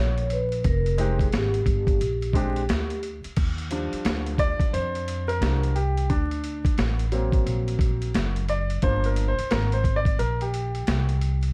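A clear, up-front grand piano takes a solo from 3.4 seconds in this cool, relaxed jazz-hop cut from a longer hip hop piece, moving through lush chords such as Ebmaj9, D7b13 and Gm7 at 88 BPM in 4/4 with a swung 16th-note feel in Eb major. Before that, a mellow vibraphone played with soft mallets carries the melody with a metallic, ringing, airy tone and slow motor vibrato, bathed in plate reverb until it drops out at 3.0 seconds. The piano, which joins as accompaniment at 1.0 second, shares that plate reverb. Underneath, a woody pizzicato upright bass with steel strings sits up front. A compressed, sampler-style boom bap kit adds a gritty texture with a thumpy kick, a high-tuned snare, hi-hat and crash cymbal, re-recorded in a large room. The dark, warm production carries light reverb and a layer of vinyl crackle.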